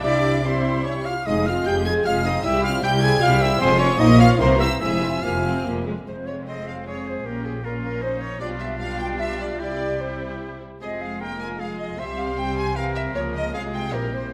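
A moderate scoring-stage reverb surrounds this urgent, stormy excerpt from a quick classical-period symphonic movement in F minor, moving in 3/4 at roughly 142-157 BPM with a rubato feel. Close, vibrato-rich violins carry the melody, with an expressive second violin line, an airy flute in the background and a clear solo oboe weaving secondary lines alongside lush violas. A warm bassoon adds accompaniment until 5.9 s, mellow French horns hold sustained chords, and focused cellos and double basses ground the bass as the phrase restates itself from 6.1 s.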